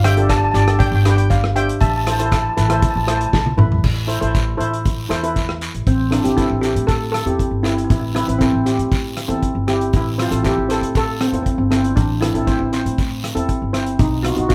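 Calypso with a dramatic, tense mood, this passage from a longer piece sets a bright, shimmering lead steel pan over a close-miked, full double-seconds pan accompaniment, a woody, growly pizzicato upright bass, an up-front soul drum kit with dark cymbals and a tight kick that plays a fill at 3.3 seconds, and a raspy guiro entering at 0.3 seconds, within a wet studio ambience.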